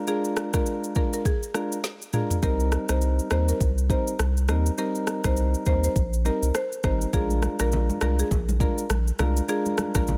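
A dry, close sound with little reverb frames this short, sultry afrobeats cut, taken from a longer piece and moving at 102 BPM in 4/4 with a swung sixteenth-note feel in C minor. Soft, round electric-piano-like synth keys with a chorus effect sit up front from the start, carrying mellow chords that move from Bb7 to Cm7 and back to Bb7. A buzzing marimba played with medium mallets adds a dark, woody melody in a narrow upper range, while an electronic afro-pop kit with a deep kick, woody snare, rim click, shaker and toms drives the groove and plays a drum fill just before the bass arrives at 2.4 seconds. That saturated sub bass is thick and up front, anchoring the smooth second section with sustained low notes. Ringing, softly played congas join in the background at 7.3 seconds, adding a small-room acoustic touch to the close.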